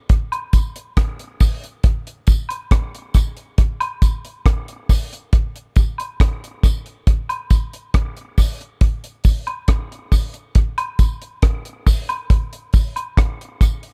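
A dark, dry reggae drum kit sits up front with a tight kick, hi-hat and rim clicks, joined almost at once by a quieter woodblock-and-tambourine part with maracas and group handclaps in a small-room sound, all in a serious, meditative groove with an echo-heavy mix, cut from a longer piece.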